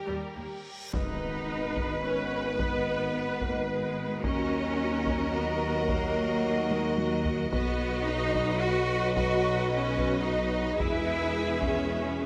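This heroic, dark cinematic excerpt of an epic orchestral film score opens with two lush violin sections carrying the melody and a second line in the background over dark French horn chords, joined almost at once by smooth bowed violas, close, focused cellos and distant, soft-attacked double basses. A huge reverse cymbal leads into an impact at 0.9 s, where heavy-stick taiko drums, very quiet mellow trombone chords and a roomy tuba enter, and the drums play a fill at 6.7 s. Set in 3/4 and moving through minor and major chords, the orchestra sits in a moderate scoring stage reverb.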